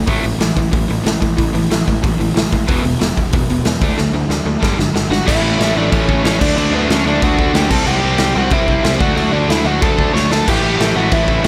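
Punk rock, rowdy and energetic, in a brief cut from a longer piece, driving in a straight four-four at a brisk clip. Two overdriven guitars open together on a riff from the very start, one picked and warm in the background, the other bright, biting and very quiet, moving through power chords on A, E, D and G. A growly fuzz bass, picked and amped with overdrive, enters at 0.1 seconds alongside a raw garage drum kit that sits up front with a punchy kick, medium-tuned snare, hi-hat and crash, its saturated, gritty sound pumping in a bright stone room with a rolled-off top. Toward the end of a drum fill leading into the second section at 5.3 seconds, a crunchy overdriven lead guitar takes up a melody at 5.1 seconds and another biting, double-tracked rhythm guitar joins very quietly at 5.2, as the harmony then shifts through A, D, C and D. A second short drum fill near 10.1 seconds pushes the band back toward A, and the whole mix stays dry with little reverb.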